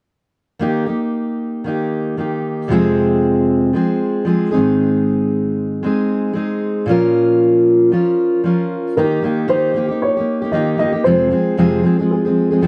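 Acoustic pop with a sunny, heartfelt mood, this short excerpt opens on a fingerpicked steel-string acoustic guitar, up front and warm, laying down a lightly swung accompaniment until a dark, woody upright piano with short, boxy sustain enters at 9.0 seconds to carry a mellow melody, all within a moderate studio reverb and a dark, warm production.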